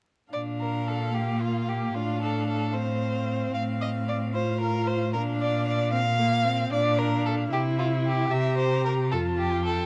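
Heard through close, detailed microphones with light reverb and vinyl crackle, this spirited, cheerful fragment of a quick classical-period string quartet movement in a rubato 6/8 sets a dark first violin singing the melody with vibrato and expressive portamento over an up-front, focused second violin, a rich but distant viola accompaniment and a smooth, even cello bass, all four bowed from 0.3 to 9.9 seconds.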